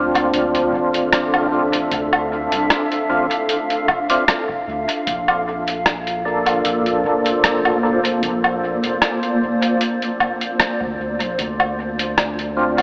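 A blurred, evolving granular cloud pad holds sustained Dm7 and Bbmaj7 chords up front in this meditative, hazy ambient dub excerpt at 76 BPM in D minor, joined by lightly overdriven percussive tonewheel organ stabs with chorus vibrato, slow rotary speaker and dub echo, a round, soft sub bass, a muffled, compressed sampler-style kit of hi-hat, rim click and woodblock with dub echo that enters at 0.2 seconds, and a deep analog kick sitting in the background of a large room, the whole mix carrying an echo chamber reverb and an AM radio sound.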